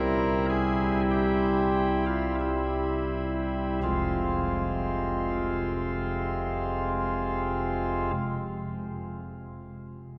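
Solemn and dark, this short classical chorale-style excerpt in F minor moves at a slow 42-51 BPM in 4/4, slowing down through its first 3.8 seconds as a lone pipe organ cornet stop, nasal and chiffy with a baroque voicing, plays up front from F1 to Bb4 until 8.1 seconds, its C7 chord settling onto F minor while a cathedral reverb of 6.1 seconds places the listener further back in the room.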